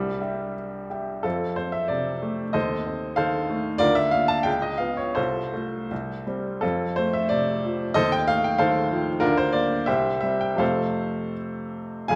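A clear, intimate baby grand piano sits up front, its action noise audible as it plays solo across a span from F1 to A5 in this passionate, hopeful romantic character piece. Set in F major and 2/4, the music moves with free rubato between 76 and 98 BPM, touching colorful harmonies such as F7/Eb, Bb/D and a striking Db7 before settling back home on F at 10.6 seconds. A wet recital hall reverb surrounds the natural piano tone in this short passage cut from a longer work.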